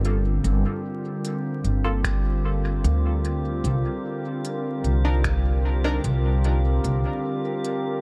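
A straight 4/4 pulse at 75 BPM carries this spacious, hazy ambient dub piece, where a warbling, nostalgic tape-like pad and a woody pizzicato upright bass sit up front over Gm7 moving to C7sus2 at 3.6 s, finger snaps and smooth hi-hats from an electronic kit drift through dub echo, a glassy sine texture hovers on G4 with drifting overtones, a muted, detuned chord stab with phaser and cassette grit enters at 1.8 s, and a deep electronic kick sits in the background from 2.0 s, with overdrive on both the kit and the kick, all set in a dark production flecked with vinyl crackle.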